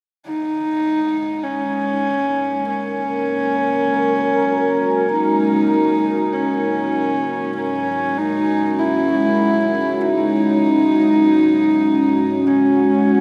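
A lone horsehead fiddle opens this slow, vast and ominous dark ambient drone at 0.3 s, its nasal, husky bowed tone gliding with portamento through a diffuse delay. From 1.6 s a deep, moody pad of detuned sawtooth and sine layers with a sub octave and chorus enters on a slow attack, sustaining chords alongside the close, earthy fiddle. A huge, wet reverb surrounds the music at 49 BPM as the harmony moves from Gb to a rootless Bsus2 at 10.1 s.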